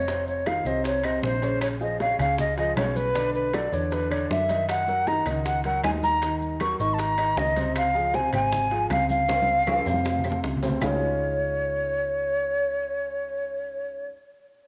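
A breathy metal flute opens this Afro-Cuban jazz excerpt up front together with a dark, round hollow-body electric bass, setting a sunny, sophisticated mood in a straight four-beat feel. The flute sings with vibrato, a soft attack and lifted highs, its slightly unsteady tone colored by a cassette-tape grain, while a smooth, vintage grand piano, also touched by cassette tape, fills in the harmony beneath it. In the background a percussion section of tight, high-tuned bongos, bright, damped congas, ringing metal-shell timbales and woody claves drives the groove alongside grainy, mellow maracas. A drum fill from 9.3 seconds leads into a closing passage, where the percussion drops out at 10.9 seconds and the flute, bass and piano carry on to the end. The whole home cassette recording sits in a moderate, lush hall reverb.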